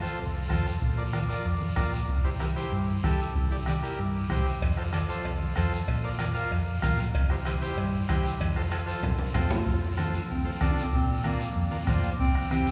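A round, dark hollow-body electric bass anchors this joyful, festive cumbia at 190 BPM in F major, under a reedy vintage combo organ bathed in spring reverb, a raspy, saturated guiro, a soft-beaten bombo and low-tuned, thick-skinned congas in the background, with ringing cowbell and timbales from 4.6 to 9.6 seconds, a drum fill at 8.4 seconds, and a mellow jazz-style clarinet solo entering at 9.3 seconds with vibrato and scooped notes, all set in the long, wet reverb of a church.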